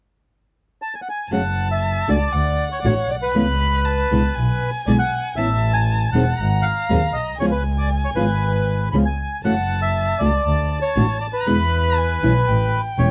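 Played rubato in 4/4, this dramatic, sultry tango fragment, cut from a longer piece, opens with a reedy, mid-forward bandoneon carrying the melody from 0.8 seconds before the other parts join at 1.3 seconds. A bowed violin adds a soft-attacked second line with vibrato and portamento, a fingerpicked classical nylon-string guitar supplies the accompaniment, and a bowed double bass, expressive and up front, anchors the bottom with its own vibrato and sliding notes. The close, detailed sound carries little reverb, keeping every instrument intimate and immediate.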